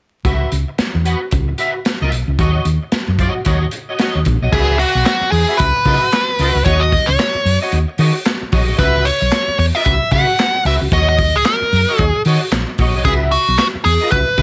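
A swung sixteenth-note funk groove drives this hypnotic excerpt, built on a crunchy, saturated breakbeat kit with a punchy kick, dark cymbals, hi-hat, snare, handclaps and crash, over a round, up-front hollow-body bass and a twangy, slightly broken-up rhythm guitar treated with ensemble chorus. From 4.5 seconds, a nasal, overdriven lead guitar with a parked wah steps forward to carry the melody as the harmony keeps cycling between C#m7 and D#m7. The sound is dry and close, with a gritty rolled-off top on the drums and a layer of vinyl crackle.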